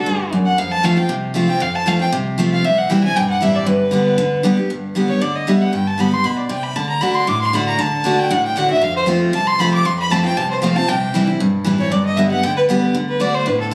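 Virtuosic and joyful, this bluegrass excerpt in G major races along at 233 BPM in a straight 4/4, with a clear, earthy bowed fiddle taking a solo up front from the start until 13.0 seconds, its smooth top lightly touched with vibrato. A bright, full-bodied picked steel-string acoustic guitar sits up front as accompaniment while a woody, dark pizzicato upright bass stays in the background, the changes cycling through D, F, C and G. Captured on a phone in the room, the sound carries moderate large-studio reverb, club ambience and a faint mains hum.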